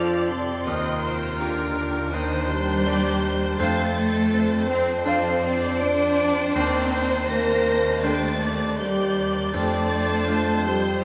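In a rubato 4/4 at 81 BPM, this bittersweet, sorrowful cinematic fragment sets a high, vibrato-rich violin section melody over background second lines from clear oboe, mellow flute section, lower violins and clarinet, while a bright concert grand piano and lush violas accompany, a tight French horn section holds sustained chords, and smooth cellos with a background double bass section anchor the bass, all bathed in a spacious scoring-stage reverb as the chords move from Dm7/F through Ebadd9 and Cmadd9/Eb to F6.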